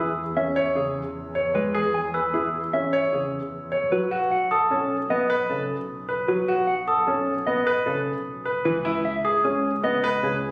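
A clear, polished concert grand piano spins up-front arpeggios through this bright, hypnotic excerpt of minimalist classical pattern music at 152 BPM in 6/4, joined by a dark, worn grand piano accompaniment with audible action noise, a clean, fingered electric guitar melody, soft bell-like glockenspiel arpeggios struck with rubber mallets, and a smooth, bowed double bass section with vibrato, moving from E to B7(no3) to C#m7 in a moderate recital-hall reverb captured on a phone in the room.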